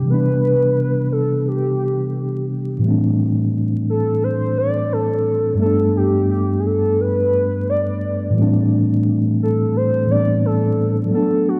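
Hazy and melancholic, this short hip hop excerpt at 87 BPM in A minor sways with a swung 16th-note feel, moving from Cmaj9 through Am7, Gadd9 and Am11. A mellow tine electric piano, clean and heard through built-in speakers, carries the accompaniment up front from the start, while a warbling, nostalgic lead of detuned triangle and sawtooth tones joins at 0.1 seconds with a soft attack, sustained notes, vibrato, portamento, chorus and tape echo. Both parts wear a cassette tape colour, and the whole home cassette recording sits in a lush hall reverb flecked with vinyl crackle.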